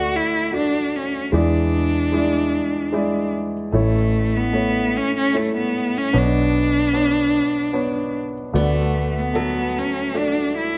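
A bowed cello carries the melody from the first moment, its clear, focused tone and vibrato sitting up front as a single player, while a grand piano accompanies with an intimate, natural sound where the action noise is audible. Beneath them, a vintage electric bass played with the fingers and foam-muted adds a dark, round, punchy low end that drops out at 9.8 seconds. This heartfelt acoustic folk-pop ballad moves at an unhurried 75 BPM in 3/4 with a straight feel, set in D major and passing through D, E7, A and Bmadd9 before returning to D. At 8.6 seconds, a picked steel-string acoustic guitar enters quietly with boxy arpeggios just as the opening section begins again. A moderate recital-hall reverb surrounds the playing, and the fragment ends at 10.8 seconds, cut from a longer piece.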